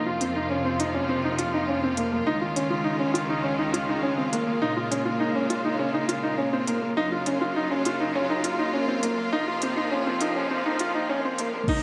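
Piano and strings electronica with a cinematic, melancholic mood, this excerpt moves in a straight 4/4 through a build-up over chords from Fsus4 through Dbadd9, Bbm7 and Gbmaj7 before returning to Fsus4. A lush symphonic string section sits up front with sustained, vibrato-rich bowed chords, shaped by sidechain pumping and a low-pass filter. Beneath it, an intense cello section carries the bass line with light vibrato, also pumping against the sidechain. The warm concert grand piano, also up front, plays a smooth, vintage-toned riff with deep bass, trailed by a digital delay. An organic electronic drum kit adds crash cymbal and smooth, tape-warm hats in studio reverb, and an overdriven electronic kick arrives only at 11.7 seconds as the passage ends, all set in a wet echo chamber reverb.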